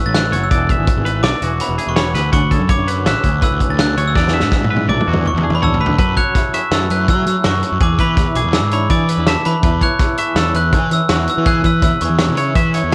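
A worn, warbling cassette-tape sound with drifting pitch and light reverb colors this short cut from a longer math rock and midwest emo piece, intricate and wistful in mood, moving at 164 BPM in 5/4 with a straight feel in A major. A glockenspiel struck with brass mallets carries the melody in a bell-like, sparkling register, while a clean, compressed, twangy electric guitar picks arpeggios beneath it. A second guitar through a small old amp, slightly broken-up and pulsing with tremolo, fills out the accompaniment lower down. A fuzz-overdriven picked bass sits up front, and a loose indie drum kit with a fat snare, punchy kick and rolled-off top drives the rhythm, closing the first passage with a fill from 4.2 to 6.0 seconds. The harmony drifts through rich extended chords such as Dmaj9#11 and F#m11, landing on a rootless Amaj7/E at 9.6 seconds.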